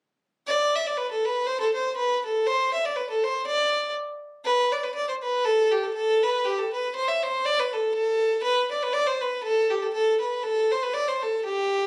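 In a brisk 2/4 at 120 BPM, with a gentle swing on the eighth notes, this bright and cheerful Celtic folk excerpt moves at a lively dance pace. A single bowed fiddle carries the whole tune alone from 0.5 to 11.9 seconds, staying within a compact range from G4 to E5. Its tone is rich and slightly nasal with a boxy edge, shaded by light vibrato, and the bowing sounds smooth and even. The opening strain gives way to a second section at 4.4 seconds. Captured on a phone in the room, the fiddle sits up front with light reverb and a club-like ambience around it.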